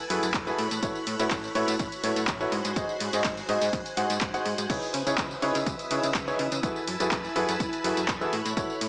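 Soulful and energetic, this piano house cut centres on a clear, worn grand piano riff, up front with vintage 12-bit sampler grit and dub echo, over a plucky, funky analog bass, a punchy, tape-warm drum machine with crash, handclaps, hi-hat and tambourine, an electronic kick, shimmering string-machine violins pumping in the background, and a very quiet, cloudy granular pad, all heard through light digital ambience with a small-speaker sound.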